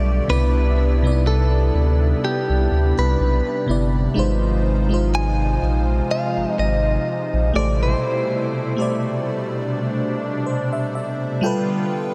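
A dreamy mix soaked in huge ambient reverb opens this short cut from a longer contemporary R&B piece, romantic and smooth at a slow, gently swung pace. A clean, bright electric guitar, recorded direct and compressed, carries the picked melody through a vibrato effect and a diffuse ambient delay. Beneath it, an FM electric piano with a soft pad layer adds lush, detuned chords with a chorus sheen, then closes the passage with a fill from 10.0 to 11.9 seconds. A vintage analog pad holds slow-blooming sustained chords, its sawtooth tone warbling through a rich chorus. A deep, thick, saturated sub bass sits up front until 7.9 seconds, while the harmony moves from Cmaj9 through Ab6 and Am9 to G9.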